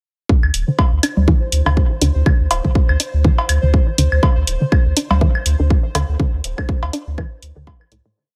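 A squelchy, resonant blip pluck and a punchy four-on-the-floor kick open this hypnotic, clinical minimal techno piece at 0.3 s, around a D chord at 122 BPM with a light 16th-note swing. The pluck's nasal, detuned 16-step sequence carries chorus, dub echo, sidechain pumping and a filter sweep, over a deep, thick sub bass with tube saturation rolling in staccato. Tape-toned programmed hi-hats, clicking claves, cowbell and low conga in cross rhythm with dub echo, and a faint pulsing gated texture holding a high C5 with chorus and reverb fill out the dry mix before a fade-out from 5.5 s.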